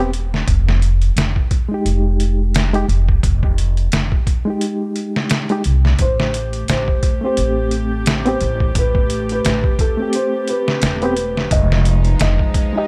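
Dark and hypnotic, this trip hop excerpt moves at 87 BPM with a swung sixteenth feel, as a reedy electric piano with fast tremolo and tape echo and a woody, pizzicato upright bass with tube saturation sit up front over a gritty, compressed, pitched-down sampler-style drum kit with a thumpy kick. At 6.0 s a soft, muted felt upright piano enters with a boxy melody treated with dub echo, joined by a quiet string section playing floating, sul tasto sustained chords. The harmony moves from Fm7 to Am7 and back to Fm7, all within a studio reverb.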